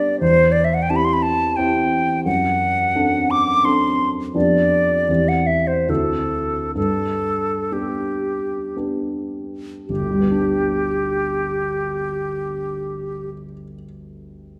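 An airy silver concert flute with vibrato and a soft attack sings the melody up front in this serene romantic classical excerpt in a rubato 3/4, over a dark, mellow baby grand piano accompaniment that slows with it from 3.3 to 9.9 seconds and carries on alone after the flute stops at 13.3 seconds, all set in the wet reverb of a recital hall.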